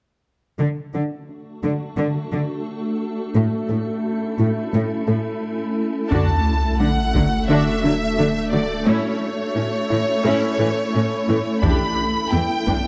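A rich, up-front cello section carries the bass from 0.6 seconds beneath a tight, detuned sawtooth synth arpeggio that sits in the background with chorus, phaser and digital delay, while a swarming, granular drone enters at 1.5 seconds in this brooding, futuristic hybrid orchestral and electronic film cue at 87 BPM. At 6.1 seconds an impact lands as heavy-stick taiko ensemble hits and an electronic sub drop arrive, and a lush, focused violin section takes the melody over clear, bowed violas, with the harmony moving through D, A and Em7. Close, detailed microphones and a moderate scoring-stage reverb frame this passage cut from a longer piece.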